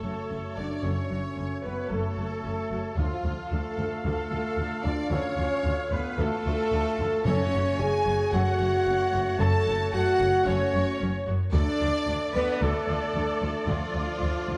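Set in a straight 4/4 at 112 BPM, this dark, heroic cinematic cue in F# harmonic minor moves between F# minor and D minor across its 14.6 seconds, cut from a longer piece. A clear, intense violin section carries the melody with vibrato, sounding somewhat distant, while a very quiet, airy flute ensemble with a soft attack and a focused second violin section trace a second line in the same register. Expressive violas fill in the background accompaniment, and the French horns, the most present voice in the mix, hold sustained chords alongside a tight woodwind section. Punchy, roomy trumpet stabs sit further back, and smooth, even cellos and double basses anchor the low end with a lush bowed bass. A huge, bright impact is barely audible at the very start, and a round timpani note on F#2, struck with soft mallets, lands at 7.2 seconds. The whole is bathed in a wet concert hall reverb with a dark production.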